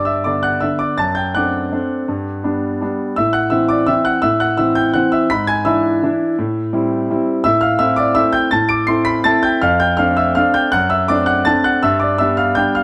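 Playful and elegant, this short classical piano waltz in 3/4, cut from a longer piece, features a solo concert grand played up front with a clear, natural tone, deep bass and long sustain, its uneven, rubato pulse moving through chords such as G, Am and D7/F# under light reverb and a dark production.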